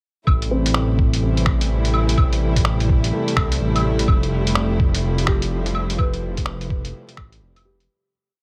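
A shuffled future garage groove rides a muffled, thumpy two-step kick and a skittering lo-fi sampler kit of closed hi-hat, claves and finger snaps, both pitched down and tape-toned in a small room, while a deep, rumbling detuned saw bass sits up front with a pumping dub-style line. Dark, sul tasto chamber strings hold a bowed, pumping pad with light vibrato, moving from Am7 to Fmaj9 at 4.1 seconds. A soft, felt-muted upright piano scatters mellow notes in the background through a filter sweep and delay, and the whole ghostly, melancholic piece sits in a digital ambience before fading out from 5.4 seconds.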